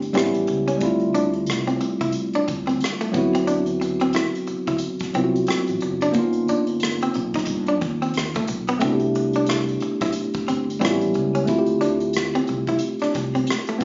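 A worn, slightly out-of-tune tine electric piano anchors this late-night, soulful R&B and neo-soul excerpt, sitting clean and up front with chords that move from A7 and Dm7 through D13, G7alt and Cmaj7 before circling back. Underneath, a round, dark fretless electric bass plays with an amped, punchy tone, sitting low in the mix beside an acoustic drum kit played with bundle sticks: a punchy kick, hi-hat and rim click in a studio room. At 0.2 seconds a picked archtop guitar enters as a second line, its hollow-body sound clean, dusky and forward, bathed in plate reverb. The groove sits at 90 BPM in 4/4 with a relaxed sixteenth-note swing. The whole performance was captured on a phone in the room with moderate studio reverb, so the top end is dulled.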